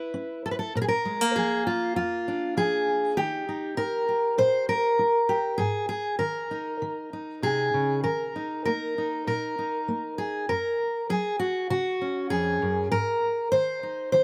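In a straight 4/4 feel at 99 BPM, a lone fingerpicked steel-string acoustic guitar carries this short folk fragment from start to finish, lifted from a longer piece and running about 14.2 seconds. The mood is hopeful and nostalgic, with the harmony moving from Aadd9 through Bb, Eb and Abadd9, then on to Eb5, Gbadd9 and back to Abadd9 near the close. The dreadnought guitar sounds bright and full-bodied, with the crisp ring of fresh strings and audible finger squeak. Its range stretches from F2 up to C5, giving the solo a grounded low end beneath its higher notes. Recorded outdoors with little reverb, the instrument sits up front, so every plucked detail comes through clearly.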